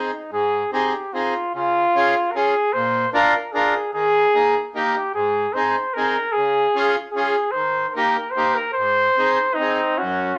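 A flugelhorn with a light vibrato and a vintage, classical-style tone carries the melody up front from the very start of this short alpine folk dance-band clip, which is cut from a longer piece. A reedy, mid-forward accordion sits up front alongside it, supplying the accompaniment in a jolly, festive mood. The tune moves at 149 BPM in a lilting 3/4 with a gentle swing, set in Ab major and cycling through Ab, Db, Bb and a suspended Eb that resolves back home. Near the close, at 9.6 seconds, a trumpet with a smooth top and its own light vibrato slips in briefly with a second line beneath the flugelhorn. A wet studio reverb gives the small band a lively, festive sense of space.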